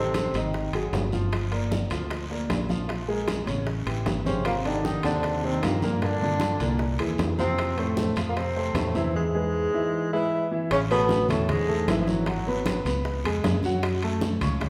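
A tenor saxophone leads this lively, sophisticated Afro-Cuban jazz excerpt at 153 BPM in a straight 4/4, its distant, roomy tone marked by light vibrato and scooped notes. After a brief opening figure shared with a breathy baritone saxophone, the two return together at 4.3 s, the baritone sitting in the background with a mellow subtone, soft attack and its own vibrato, the pair playing until 12.9 s. A baby grand piano stays up front throughout with an open, long-sustaining sound, moving through rich jazz chords such as Gm7 and C7alt before the music settles into A major at 10.7 s. An up-front fingered electric bass supplies a dark, round low end. Congas with a low-tuned, thick-skinned sound and timbales with a ringing metal shell sit in the background, joined by very quiet, tight, high-tuned bongos and a raspy, saturated guiro. The whole band plays live in one large studio room, bathed in a generous reverb.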